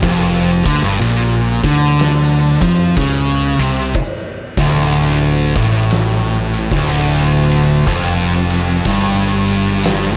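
Heavy and hypnotic, this stoner and doom metal fragment crawls at 61 BPM in 4/4 with a swung eighth-note feel, set in D minor and cut from a longer piece. Two distorted, picked fuzz guitars sit up front playing the riff from 0.0 to 10.2 seconds, one dark-toned and the other thick and warm, both ranging from D2 to F3. Beneath them, a growling fingered electric bass with a bright, overdriven, direct-and-amped edge carries the low end from D1 to F2. An oversized, low-tuned acoustic drum kit with a punchy kick, fat snare and dark ride cymbal adds a saturated, gritty weight, heard in a bright stone room. The harmony moves from G5 to Dm at 4.0 seconds, and the whole mix is dressed in light reverb and small room ambience with its top end rolled off, keeping the sound murky and dense.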